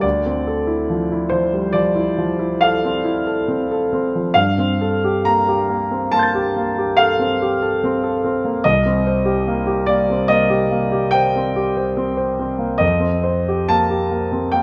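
Mysterious and wistful, this impressionist classical fragment from a longer piece features a solo concert grand piano in G minor at 70 BPM in an uneven 5/4 with free rubato, its clear, open, up-front tone ranging from a deep bass at C2 up to A6 as the harmony drifts through Dm9, Gm11, Cm7 and F9sus4, all set in a moderate recital hall reverb.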